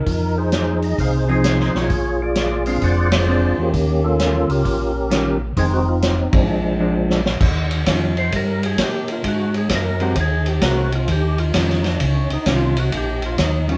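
A fat, lightly overdriven percussive tonewheel organ with key click and chorus vibrato carries the melody over a smooth organ bass, both turning through slow rotary speakers, as a punchy vintage drum kit with dark cymbals kicks in at 0.1 seconds and a clean hollow-body jazz guitar joins in accompaniment at 1.3 seconds, setting a greasy, swinging soul jazz organ trio groove at 131 BPM in Eb mixolydian, punctuated by band accents and a drum fill that launches an organ solo at 7.4 seconds, captured as a live band in one room with moderate reverb.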